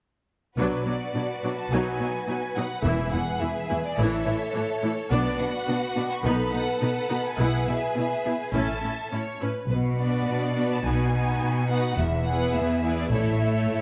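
In a straight 4/4 feel, this heroic, adventurous cinematic cue for a full string orchestra is cut from a longer piece, with violins carrying a focused, vibrato-rich melody above a second violin line while violas add an intense accompaniment. Smooth, close cellos and woody double basses anchor the bass beneath a recurring minor-to-major chord cycle, and background timpani struck with hard mallets sound briefly from 2.8 to 3.7 seconds. A moderate scoring-stage reverb gives the lush bowed ensemble a sense of space.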